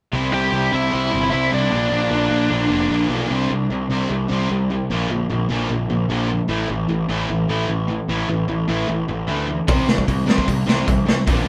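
A live-in-one-room punk rock excerpt with moderate studio ambience catches an upbeat, energetic band at 151 BPM in C major, where a bright overdriven electric guitar and a dark, sludgy distorted guitar pound out riffs over a growly, fuzz-drenched picked bass sitting up front. A biting lead guitar with overdrive and delay cuts in with a short melody from 0.3 to 3.1 seconds, and the chords shift from C and Bb to power chords on C5, Bb and A5. Only at 9.7 seconds does the raw garage drum kit burst in, gritty and saturated with a punchy kick, medium-tuned snare, hi-hat and a pumping small-room sound.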